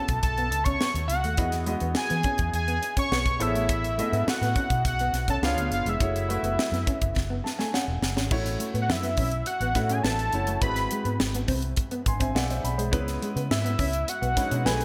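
A fat, detuned analog synth lead with vibrato carries the melody over natural baby grand piano accompaniment from the very start of this breezy, glossy slice of polished 1980s jazz-funk pop at 104 BPM, with a dark, slightly broken-up guitar riff tucked in the background. A round, foam-muted fingered bass and an up-front fusion kit with a punchy kick, high-tuned snare and gated reverb join at 0.1 seconds, and drums and piano each fill from 7.2 to 8.3 seconds as the harmony moves through lush chords such as Emaj9, C#7b9 and G#7alt. Chorus colours the lead, piano and guitar, while a bright 1980s-style digital production and plate reverb give the recording its sheen.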